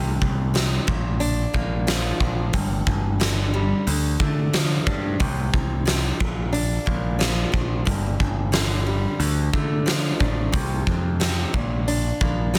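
Angsty and dark, this short excerpt of quiet-loud alternative rock moves at 90 BPM in G minor, with a fingerpicked steel-string acoustic guitar spinning warm arpeggios alongside a growling, overdriven picked electric bass that sits up front. A huge arena drum kit enters at 0.2 seconds with a fat snare, punchy kick and hi-hat, sounding natural and roomy as the chords cycle through Bb, G5 and Dm before closing on Csus4 and Bb. The mix is dry and dense, with a heavily limited modern master.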